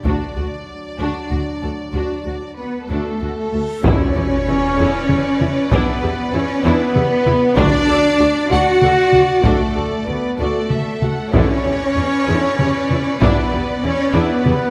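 Heroic and dramatic, this cinematic orchestral cue moves at a broad 64 BPM in 6/8, cut from a longer piece and alternating between D and E7(no3) chords. French horns hold tight sustained chords with light vibrato, while solo taiko drums with heavy sticks drive the pulse with a vintage, band-limited thud. A chamber violin section carries the melody over a lush, distant symphonic violin line, with woody, dark violas and smooth cellos in the background and a rich double bass section anchoring the low end. A hollow flute ensemble of pure, straight tone joins at 2.6 seconds, and a huge, bright reverse cymbal rises at 3.6 seconds into an impact with a sub drop at 3.9 seconds, where close, dry timpani struck with hard mallets mark the arrival. The whole ensemble sits in a wet concert hall reverb that gives the orchestra its broad sense of space.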